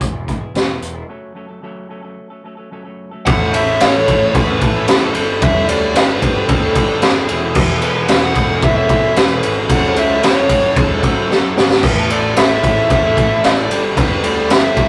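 A clean, dark semi-hollow guitar opens this anthemic, cathartic alternative rock excerpt with fingered arpeggios in A major at 112 BPM. Beneath it sit a round, fuzzed-out picked bass in the background and an up-front garage drum kit with a boomy kick, a high-tuned snare, hi-hat, ride and crash, all gritty and saturated with a rolled-off top. After a break at 1.1 seconds, the quiet opening gives way at 3.3 seconds to the loud section, where the semi-hollow guitar stops and a wall of distorted guitars takes over. A sludgy, double-tracked guitar grinds out a low riff behind the band while two bright, picked distorted guitars play very quietly higher up. Over them, a dark, smooth lead guitar carries the melody with overdrive and slapback echo, moving through Asus2, Gadd9, E and F#m chords, with a drum fill at 11.3 seconds. The sound is that of a rough rehearsal room, with light reverb and warm saturation.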